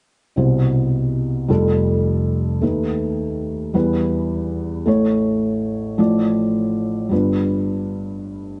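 Folk piece in a straight 6/8, nostalgic and hopeful, carried entirely by a felt-muted upright piano that plays the melody from 0.4 to 8.6 seconds, its soft, intimate tone sitting up front in the mix. The harmony moves through Cmaj7, Fadd9, B7/D#, Em, A, Dmadd9/A and G7, and a short piano fill closes the passage at 8.2 seconds. Light reverb and a rolled-off top end keep the sound mellow in this fragment cut from a longer piece.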